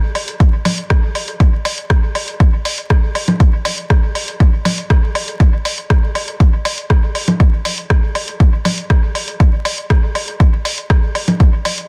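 Techno with a nocturnal, hypnotic pull, built on an up-front, layered electronic kick drum re-recorded in a small room, a punchy analog drum machine carrying hi-hat and rim click through dub echo, and layered electronic woodblock and congas pumping under sidechain and echo, all in a dry, dense, heavily limited modern master dusted with vinyl crackle.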